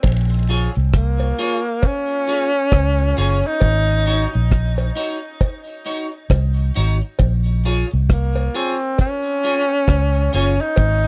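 Roots reggae in Bb minor at a laid-back 67 BPM with a swung sixteenth feel, serious in mood, where a breathy, whispered tenor saxophone carries the melody from 1.0 seconds with vibrato, scooped notes and tape echo over a dark, round, foam-muted fingered bass and a dry, deep drum kit with a tight kick, hi-hat, rim click and crash, while a clean electric guitar with lush chorus and tape echo comps softly, cowbell and a jawbone-type rattle add small-room colour, and the chords move from Bbm7 to Ab7sus4 and back in a close, dry 1970s-style sound.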